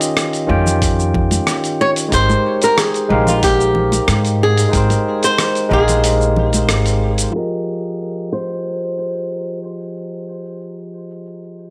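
A barky tine electric piano, up front through a combo amp with tape echo, opens this relaxed, smooth sunset chillout excerpt at 92 BPM alongside a dusty, sampler-style soul drum kit of cabasa, hi-hat and rim click, compressed and gritty as if re-recorded in a small room. A moment later a woody, growly pizzicato upright bass, a thumpy electronic kick and hard-handed congas tucked in the background join over Eb7 moving to Abmaj7. At 1.8 seconds a fingerpicked flamenco guitar takes the melody, its fresh strings also touched with tape echo. The band hits an accent just before the shift to Fm7 at 7.3 seconds, where a filter sweep colours the final stretch; the guitar plays on until 9.6 seconds, and the piano and drums carry through to the end. Light reverb and digital ambience surround a dry, gritty, low-passed hardware sound.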